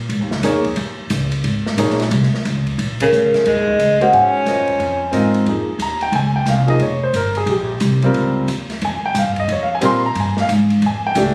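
A swinging 4/4 groove opens this intense, spiritual modal jazz fragment, with a woody, growly pizzicato upright bass up front from the start and a dark, smooth acoustic drum kit with a boomy kick, ride cymbal, hi-hat and snare settling in beneath it. A natural-sounding baby grand piano comps through most of the passage, dropping out briefly before returning at 4.0 seconds. At 3.0 seconds the band hits an accent as a mellow, ringing soft-mallet vibraphone, bathed in plate reverb, carries the melody over a clear, lightly vibrato alto saxophone second line, both falling away by 5.1 seconds, shortly before the harmony shifts from a suspended chord to a minor ninth in a roomy, phone-captured studio sound.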